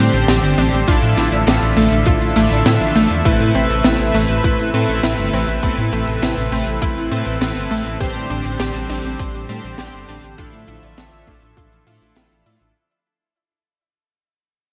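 A dark, rumbling detuned saw bass sits up front with tube saturation and sidechain pumping, driving this nostalgic synthwave fragment at 101 BPM in a straight 4/4 over Csus2/A, Dmadd9/A and Amadd9 chords. A soft, airy supersaw holds pumping chords, while a round analog pluck with chorus and delay plays arpeggios in the background. A glossy, retro chorused polysynth adds delayed stabs, and a very quiet, clean mellow electric guitar plays a fingered riff. A tight funk kit with a dry, high-tuned snare and hi-hat is joined at 0.9 s by a punchy, layered electronic kick. The bright 1980s-style digital production has a lush hall reverb, and the piece fades out from 3.3 s.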